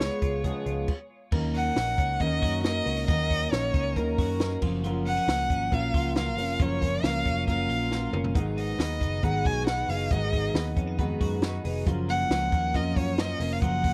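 The sound is dry and close, like a 1970s studio session. This bright, youthful slice of jangly indie pop, cut from a longer piece, moves with a straight, steady feel. A bowed violin sits up front with the melody, its soft attack, expressive vibrato and sliding portamento trailed by a tape echo. Beneath it, a full-bodied jumbo acoustic guitar is fingerpicked on fresh strings, with the odd finger squeak, while a twangy, compressed twelve-string electric guitar rings out chiming arpeggios through an analog chorus. A foam-muted electric bass gives a round, punchy, dark low end, and a compact cocktail kit with a tight kick, high-tuned snare, hi-hat, toms and dusky cymbals keeps time, pausing in a brief stop at 0.9 seconds and kicking into a fill at 7.9 seconds.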